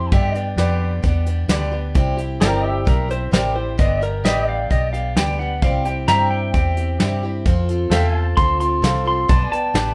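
Down-home and nostalgic, this short honky-tonk and classic country passage moves in a straight four-four feel. A pedal steel guitar takes the melody as a solo throughout, its warm, compressed tone played with fingerpicks and slide, with volume swells shaping the lead. A second, brighter and twangier pedal steel holds sustained chords in the background, while a boxy archtop acoustic guitar with fresh strings is picked as accompaniment. A dark, round, foam-muted electric bass sits up front, and a soft brush kit from a small room adds punchy kick, hi-hat and snare from 0.1 seconds. A clear, polished grand piano joins the accompaniment at 0.6 seconds, and moderate studio reverb surrounds the band as the chords move between G, C and F.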